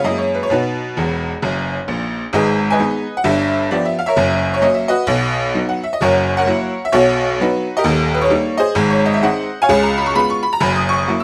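In a reverberant studio room, an exuberant, swinging stride-piano jazz excerpt in B major at 131 BPM features a solo tack piano that sounds metallic and jangly, with a short sustain and an up-front presence, spanning D#1 to E6 and breaking into a honky-tonk fill at 1.0 s before a new section begins at 2.3 s and runs through a lively chain of chord changes to 11.2 s.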